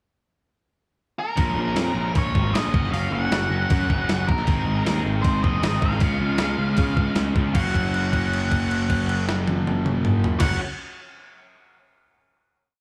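A dark octave-fuzz lead guitar with slapback echo opens this short, carefree and wistful indie rock piece at 155 BPM in F# major, playing a motif-based melody from 1.2 s, and at 1.4 s a thumpy, up-front 12-bit drum machine with a big rock groove takes over the drive alongside a growly, punchy fuzz bass driving eighth notes and two background guitars ringing chords (one biting and overdriven with spring reverb, the other bright and high-gain with subtle chorus) through a pre-chorus that lands on a held final F# chord at 7.5 s, the band heard like a live gig through a club PA.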